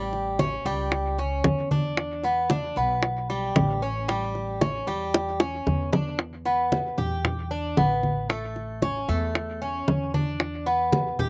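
Up-front, metallic Cuban tres arpeggios on doubled strings lead this warm, danceable Cuban son and guajira cut at 114 BPM, moving between A7 and Em7 before reaching A and E7, over a woody, growly pizzicato upright bass, with round, hard-handed bongos close and dry, bright thin-skinned congas in soft hands, and a drum fill at 5.1 seconds, all in a dry, open-air sound.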